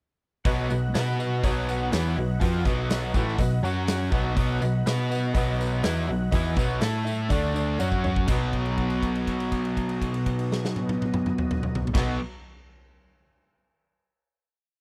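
A confident, sunny classic rock piece in B mixolydian at 122 BPM opens at 0.4 s with a jangly, detuned honky-tonk upright piano playing eighth-note chords over a very quiet tonewheel organ holding chords through a slow rotary speaker, then a bright cranked stack guitar with spring reverb and a crunchy overdriven guitar play a power-chord riff doubled by a round, dark hollow-body bass in driving eighths, while a punchy arena drum kit sits up front with a faint jingly tambourine behind it, until a drum fill leads into a final B chord held from 8.3 s, all captured in a dry, close 1970s-style studio sound.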